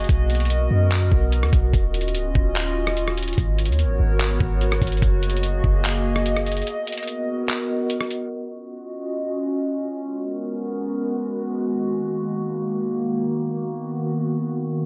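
Dreamy and floating, this half-time atmospheric cloud-rap excerpt in B lydian moves at 146 BPM over a cycle of lush chords from Bmaj7 through D#m9, G#m11 and F#69. A warbling, detuned tape-like pad with chorus, ring modulation, sidechain pumping and a nostalgic lo-fi haze sustains throughout, alongside a boomy, deep 808-style bass and a muffled, pitched-down sampler drum kit of thumpy kick, handclaps, hi-hat and rim click. The bass drops out at 6.6 seconds and the drums at 8.2 seconds, leaving the pad alone under a filter sweep from 8.3 seconds to the end.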